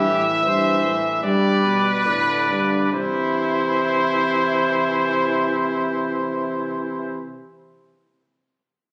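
A stately, joyful brass ensemble opens together in an imitative classical canzona, with an up-front trumpet carrying the melody with vibrato over a distant, roomy second trumpet, a bright trombone and a mellow bass trombone, each of the higher three shading its tone with vibrato. The tempo slows through the opening 2.9 seconds as the harmony moves from C to G and back to C. The sound sits in a moderate recital-hall reverb, captured on a phone in the room, and the fragment is cut from a longer piece.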